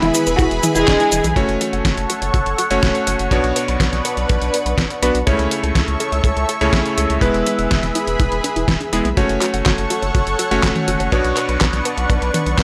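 Italo disco in F# minor at 123 BPM, this short, bittersweet, danceable cut from a longer piece moves in a straight 4/4 through F#m, Bmadd9, A/C# and E. A dark, woody violin section with vibrato carries the melody through analog delay for only the first 1.3 seconds. Underneath, a thick, detuned unison pad holds slow-attack chords through chorus and phaser, while a bright, clangy electric grand piano sits up front with cutting stabs fed through delay. A deep, round analog bass anchors the low end, and a soft, gentle pluck enters at 0.1 seconds with dark arpeggios in the background, treated with chorus, delay and a moving notch. The rhythm comes from a detuned 8-bit drum machine with a tape-warm, sampler-style snare, handclaps, hi-hat, cabasa and toms, joined at 0.4 seconds by a tight, dry acoustic kick. Light reverb and transformer saturation give the mix a gritty hardware edge.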